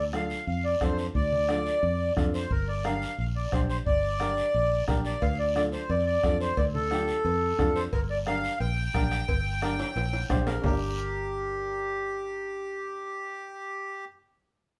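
A reedy, airy accordion carries the melody up front from the opening moment, over a round, foam-muted fingered electric bass that sits close and direct in the mix. This fiery, passionate cumbia excerpt moves at 177 BPM in a straight 4/4 in G minor, with the harmony alternating between Dm and Gm. A worn, woody upright piano with a slightly detuned character fills in the accompaniment, while a compressed, saturated bombo, damped congas set in the background and a raspy guiro drive the groove. At 5.2 seconds, ringing metal-shelled cowbell and timbales join the percussion, and a drum fill at 9.8 seconds leads into a brief closing section after the percussion stops at 10.7 seconds, leaving accordion, bass and piano. The band sounds like it is playing live together in one room, with a moderate studio reverb.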